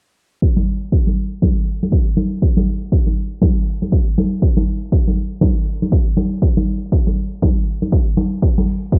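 Deep house with a hypnotic, swung 16th-note feel: a punchy analog kick with small-room ambience and cassette-tape grain sits up front beside bright, soft-handed acoustic congas, an overdriven, layered hi-hat surfaces briefly in the background at 8.7 seconds, and a filter sweep runs across the whole cut from a longer piece, which has a low-pass, home-cassette sound.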